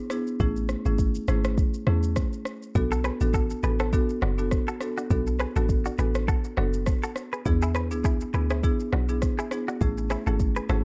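Mellow and sultry, this afrobeats cut from a longer piece sits at 102 BPM in B dorian with a light sixteenth-note swing, as a woody marimba and an electronic afro-pop kit with a deep kick, rim click, shaker and vintage 12-bit sampler grit open at 0.1 seconds, a round, percussive FM log drum bass with a noise layer joins at 0.4 seconds, and a bright, twangy, clean picked electric guitar riff with digital delay enters at 2.9 seconds over Amaj7, Bm7 and E7 chords in a dark, dry production.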